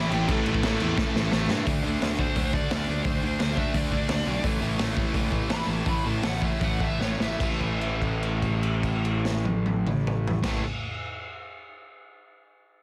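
A muffled, lo-fi garage drum kit with a boomy kick sits up front in this rowdy, rebellious punk rock cut, driving at 146-174 BPM over a growly fuzz bass, background riffs from a bright distorted electric guitar, a hollow-body overdriven semi-hollow guitar and a double-tracked high-gain guitar that drops out at 1.7 seconds, where a dark, bluesy overdriven lead guitar takes a solo that runs until 7.4 seconds as the music slows down, giving way to a held note, all in a dense, dry, heavily limited mix.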